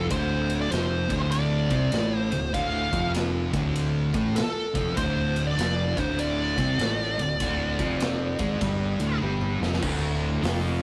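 Sludgy and heavy, this short stretch of stoner and doom metal rolls at 99 BPM in D minor with a swung, lumbering gait, cut from a longer piece. An up-front, compressed fuzz lead guitar carries the melody through wah and distortion, sitting between A4 and F5 until 9.2 seconds. Beneath it, two dark, picked fuzz guitars grind out the riff in the low register, one of them tucked into the background, while a bright, growly fingered bass with overdrive adds a punchy low end. A big acoustic rock kit with bright cymbals, a medium-tuned snare and a punchy kick drives the groove, then plays a fill from 9.2 to 9.8 seconds. At 9.8 seconds a double-tracked, crunchy overdriven guitar joins in the background for the closing passage, all set in a rough rehearsal-room sound with light reverb and saturation.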